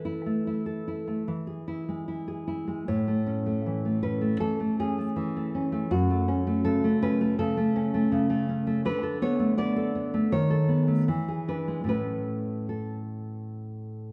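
Romantic solo classical guitar in A major at 80 BPM, with a sunny, nostalgic mood and a freely rubato 4/4 pulse of uneven beats. The nylon-string guitar sits up front with a dark, full-bodied, thumb-plucked tone, moving from an Esus4 opening through F#m, Bm7/D and B7/D# before settling back on A at 11.9 seconds. A wet recital-hall reverb surrounds the instrument, and the sound rolls off above 10.8 kHz in this fragment cut from a longer piece.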